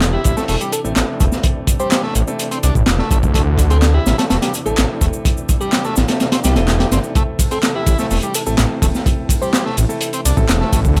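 Energetic and raw, this breakbeat cut from a longer piece runs in a straight 4/4 and sits on a single A minor chord throughout its 11 seconds. The foundation is a crunchy, saturated breakbeat kit with a punchy kick, a high-tuned snare and hi-hat, up front with a rolled-off top, joined by an overdriven analog drum machine adding handclaps, ride cymbal and shaker that sound re-recorded in a large room. A thick, menacing detuned saw bass, beating and saturated, is the loudest part and anchors the low end. Above it, a buzzy combo organ with light vibrato plays a riff from 0.1 seconds through overdrive and tape echo, while a very quiet tonewheel organ holds sustained chords with key click and fast rotary speaker. A sparkling, warbling FM electric piano carries the melody until 9.6 seconds, its bell-like tone run through chorus, telephone filtering and tape echo, and a dark, mellow grand piano sits in the background with stabs from 0.4 seconds, roughened by 12-bit sampler grit. 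The mix is dry, with little reverb.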